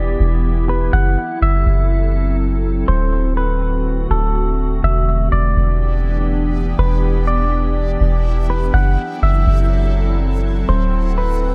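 Hip hop with a hazy, ethereal half-time feel, where a round, dark 808-style bass sits up front beneath a glassy, chorused FM pad holding sustained chords and a twangy, compressed clean electric guitar melody with digital delay, while a reversed, granular backwards swelling texture drifts in at 5.8 seconds within a digital ambience.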